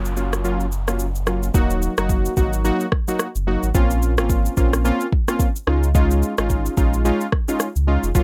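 Sultry and hypnotic, this short afrobeats excerpt sits at 109 BPM in 4/4 with a swung sixteenth-note feel, centered in Eb dorian and tuned slightly sharp at A4 = 443 Hz. Round, full-bodied analog keys carry the accompaniment from the start, their detuned sawtooth tone shaped by chorus and a low-pass filter sweep, with a fast attack that decays into the mix. Beneath them a deep sub bass with an octave layer blends sine and triangle character into a sustained, up-front foundation. An electronic afro-pop drum kit with a deep kick, rim click and shaker joins almost immediately and sits up front, while an electronic noise sweep hovers in the background for the opening 1.5 seconds before the music settles into its second section. The harmony moves from Gbmaj7 through Ebm, Bbmadd9 and Dbadd9, and the dry, gritty hardware sound gives the groove a close, intimate grain.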